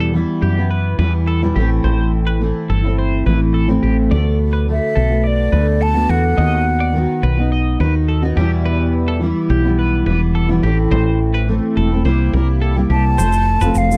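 A steady, straight 4/4 pulse carries this wistful, tender acoustic pop passage, cut from a longer piece. A dark, double-tracked, fingerpicked steel-string acoustic guitar sits up front, while a woody fretless electric bass adds a round, punchy low end. Behind them, a quieter twelve-string electric guitar plays bright, twangy, compressed arpeggios colored by harmonic tremolo. A breathy, mellow silver concert flute sings a hollow, tongued melody from 4.7 seconds and returns at 12.9 seconds, just before a grainy egg shaker enters at 13.2 seconds as the chords move through D6, C7 and finally F. The sound is dry and close in a 1970s studio style, with a touch of studio reverb.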